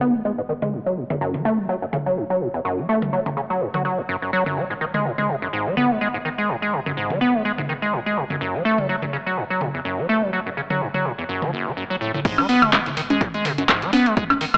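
A gritty, lo-fi recording with a cassette tape and AM radio sound sits in a lush hall reverb, framing a hypnotic, raw acid house track at 125 BPM in 4/4 with a light 16th-note swing in G# phrygian. A squelchy, resonant square-wave acid bass riff with overdrive, subtle chorus and analog delay carries the piece up front through a long filter sweep, over a very quiet, round sine sub bass, while a booming analog drum machine enters at 0.6 seconds with metallic, muffled hi-hats, handclaps, congas, toms, woodblock and crash cymbal. At 12.2 seconds the track drops onto G#m and a dry, punchy electronic kick joins in, after moving between G#m and F#m.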